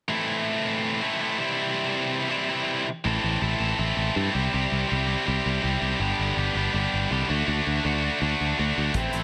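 A scooped, high-gain electric guitar sits up front with a bright, distorted riff in this wistful, jangly indie rock excerpt at 163 BPM, moving through Am, C, G and D, joined at 3.1 seconds by a growly, punchy picked bass, while a vintage drum kit with a pumping small-room sound and rolled-off top and a raw, overdriven garage guitar with lush chorus slip in only at 8.9 and 9.0 seconds, all under light reverb.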